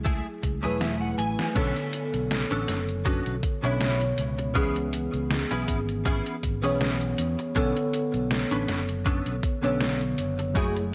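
A lazy 80 BPM pulse in 4/4 with a light sixteenth-note swing carries this hazy, nostalgic vaporwave excerpt in B dorian, where a thumpy, overdriven electronic kick and a detuned 8-bit drum machine with crunchy snare, hi-hat and crash sit under a punchy fingered electric bass. Up front, a mellow tine electric piano spreads lush chorus and tape echo over chords moving from F#m9 to Bm9, C#m7 and back to Bm9, while a compressed, picked clean electric guitar plays a chorused, echoing riff. In the opening 1.6 seconds a filter sweep and a fill on the guitar meet a drum fill before the main section settles in, all wrapped in a scoring-stage reverb and the soft grain of cassette tape.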